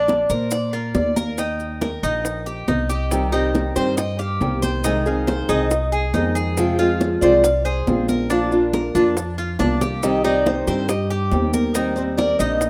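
A metallic, double-strung Cuban tres carries the melody while a second, brighter tres picks arpeggios in this sunny, relaxed Cuban son and guajira excerpt at 139 BPM in Eb major, over a woody, thumpy pizzicato upright bass up front, ringing high-tuned congas in the background, very quiet round low-tuned bongos, grainy close maracas and a drum fill at 9.6 seconds, with a small-sounding, fingerpicked nylon-string guitar entering up front at 3.1 seconds, all in a rough home demo mix with light small-room reverb.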